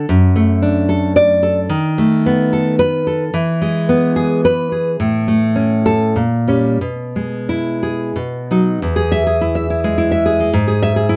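A fingerpicked nylon-string guitar carries this tender, romantic solo piece, played up front with fresh strings and a deep classical tone that reaches from its lowest bass notes up into its upper register. The feel is in triple time, stretched and pulled with rubato so the phrases breathe freely. Harmonies drift from D/F# through B7/D# to E, then wander by way of A and A#m6 before settling on B and returning home. Around 8.8 seconds a new section begins on E, closing on E/G# as this short passage, cut from a longer piece, breaks off at 11.2 seconds. The sound is dry and close, in the manner of a 1970s studio, and a finger squeak on the strings adds an intimate, warm touch.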